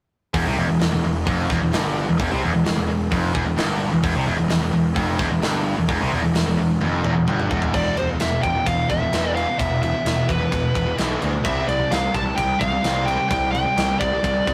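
This relentless, epic heavy metal excerpt in E phrygian at 130 BPM opens on three bright, picked distorted guitars playing riffs (the double-tracked one very quiet and stopping at 7.7 s), a growly, fuzzed-out picked bass up front, and a tight acoustic drum kit with a big-room, rolled-off sound, all over an Em chord. A drum fill leads into a new section, where a dark, high-gain lead guitar steps to the front with a melody from 7.8 s over E5 and then C5. The rough rehearsal-room recording carries light reverb.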